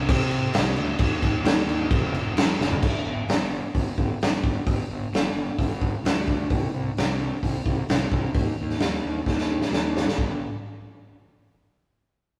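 A fuzzed, overdriven fingered electric bass opens this menacing, swaggering garage rock excerpt at a straight 131 BPM in 4/4, its round, tube-saturated tone sitting low beneath a gritty, up-front acoustic drum kit with a rolled-off top, punchy kick, medium-tuned snare, hi-hat, crash and toms that plays fills at 2.6 seconds and from 9.3 to 10.2 seconds, all captured in a rough rehearsal room with a moderate small-room reverb.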